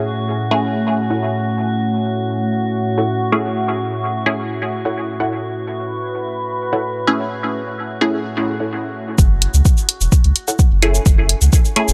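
Hypnotic and meditative, this dub techno passage, cut from a longer piece, moves at 128 BPM in a straight 4/4 in F# minor, resting on an F#m7 chord. A dark, moody analog pad of detuned sawtooth and triangle with a sub octave holds sustained chords up front, treated with chorus and phaser and given a filter sweep across its span to 9.2 seconds, while a calm, glassy texture of drifting sine overtones hovers on F#4 with chorus and its own reverb. Entering at 0.5 seconds, a filtered dub chord stab sits up front with a muted yet bright, wave-folded edge, its short, detuned hits sent through phaser and dub echo. In the background, a warbly, dusty lo-fi pluck plays an evolving riff with chorus and dub echo, and the pad, texture, stab, pluck and bass are all pushed by sidechain pumping. At 9.2 seconds the pad and glass texture stop as a tape-warm, layered deep kick, a low-pass-filtered shaker and hi-hat, and a clean, smooth sine sub bass with tube saturation arrive, the bass and kick both up front. 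The sound is a dry, gritty hardware recording with light reverb.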